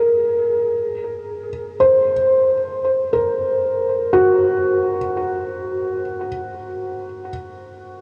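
Ambient music, serene and melancholic, moving at a slow 58 BPM in a straight 4/4, tuned to A4 = 442 Hz. A felt-muted upright piano plays alone from 0.0 to 8.0 seconds, its notes sitting between Gb4 and C5 over a rootless Fmadd11 harmony. The piano sounds soft, mellow and intimate, placed up front with audible action noise, and a delay trails its notes. The whole is bathed in a huge, wet ambient reverb with a long 8.3-second decay, and a worn old cassette tape character adds warbling pitch drift and a vintage patina. This brief passage is cut from a longer piece.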